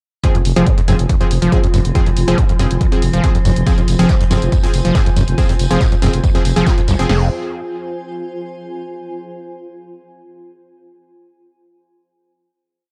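A punchy analog drum machine drives this hypnotic, intense peak-time techno piece at 140 BPM in F phrygian with its four-on-the-floor kick, alongside programmed electronic hi-hats, beneath a thick, growling FM bass playing a galloping sixteenth-note line, a squelchy, distorted acid bass riff with accents and slides, sidechain-pumped supersaw stabs in bright dotted-rhythm chords, a very quiet, eerie metallic drone from 1.4 s, a loose acoustic indie drum kit looping an edited breakbeat in the background from 3.7 s, and a blurred granular cloud pad of slowly shifting chords that lingers into the closing chord at 7.1 s, set in a dark production with studio reverb.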